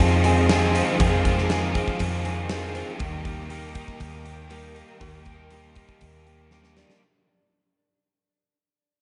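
A dreamy, melancholic stretch of shoegaze-tinged dream pop fades out from the start, opening on a huge arena drum kit with a punchy kick and fat snare, a round, dark, foam-muted fingered bass sitting up front, and two electric guitar riffs: one biting and overdriven with analog chorus, the other clean, compressed and direct-recorded with reverse reverb. Underneath, a very quiet, shimmering twelve-string acoustic picks octave-doubled arpeggios, while a silky vintage string machine holds slow-attack chords with ensemble chorus in the background over a move from Fm7 to Ebmaj7. The bass stops at 6.8 seconds, and a drum fill from 6.5 seconds closes this cut from a longer piece under light studio reverb.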